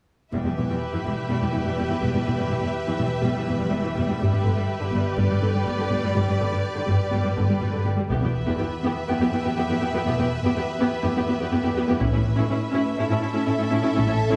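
Epic and dramatic, this cinematic orchestral film-score excerpt moves at 123 BPM in 4/4, opening in E minor over Em and G chords before shifting to E dorian at 8.1 s, where a build-up begins and the harmony moves from Em to A. Up front, an intense, close viola section carries the accompaniment beneath a focused, lush violin section on a higher second line, while a cello section with a smooth top and an expressive chamber double bass section anchor the low end with rich vibrato. In the background, a taiko ensemble struck with hard sticks adds two short bursts, the first at 8.1 s and the second at 12.0 s, all set in the reverberant space of a scoring stage.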